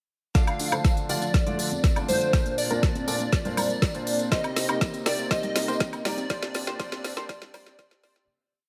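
The recording has a light reverb and a high-pass filter, and it moves through a short, expansive progressive house build with a bittersweet mood. A deep, layered electronic kick drives a four-on-the-floor pulse up front, while the deep house kit adds smooth programmed hats, a woody snare backbeat and a high woodblock, joined by distant hand-played tambourine sixteenths and soft-handed congas that slip into the background from 1.5 s. A felt-muted upright piano plays intimate, mellow dotted-rhythm stabs through a low-pass filter and delay, over a smooth analog pad with a slow attack and long release, both pumping with the sidechain across chords moving from Dm through Bbadd9 and Cm7 to Gm7. A tight, nasal sequenced synth repeats a sixteenth-note riff over a pedal note under a filter sweep, and a punchy, catchy unison lead carries the melody, doubled very quietly by a pure FM bell. A dark, rumbling detuned saw bass gallops in sixteenths but is barely audible, and a drum fill and filter sweep run under the whole build before it fades out from 5.6 s.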